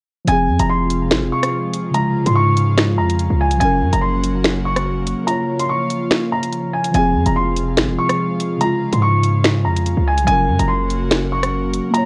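Drill hip hop in F phrygian at 144 BPM with a half-time feel, this cold, menacing excerpt cycles through Fm, Db, Gb and Bbm. A dark, mellow concert grand piano carries a high melody through low-pass filtering and delay. Beneath it, muted felt-like synth keys with chorus and an airy, breathy pad of sustained chords support a punchy, heavy 808 bass and an up-front drill kit of finger snaps, hi-hat, rim click and a sharp snare roughened by 12-bit sampler grit, while the kick drops out between 5.3 and 6.9 seconds. Light digital reverb and a worn cassette-tape warble with drifting pitch color the whole track.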